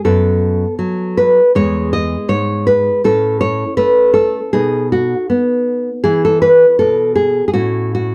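A fingerpicked nylon-string guitar, fresh-stringed and deep in tone, plays alone and up front through this short cut from a flowing, dance-like baroque-style classical piece in E major at 80 BPM in 4/4, moving with an elastic rubato across a range from the low E2 to D#5 over chords such as E, Aadd9 and B, captured in a dry, close 1970s-style studio sound.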